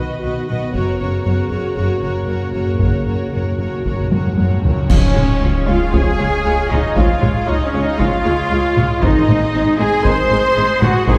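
Cinematic, epic orchestral film score with a heroic, majestic mood, cut from a longer piece. The full string body plays from the start: a smooth violin melody sits in the background, a second, focused violin line reaches higher above it, and lush bowed violas, cellos and double basses with rich vibrato fill out the middle and the bass. Dark French horns hold soft-attack chords underneath. At 0.7 seconds a taiko ensemble struck with heavy sticks joins, together with bright clash cymbals, a cymbal swell, concert bass drum and very quiet, dry timpani, building through a fill into a band accent at 4.9 seconds. From there, a clear, roomy woodwind section adds sustained chords, and a warm solo trumpet with a smooth top punctuates the texture with stabs, while the taiko drive continues and the timpani return briefly. The whole orchestra is heard from further back in a reverberant scoring stage, giving the sound a grand, spacious depth.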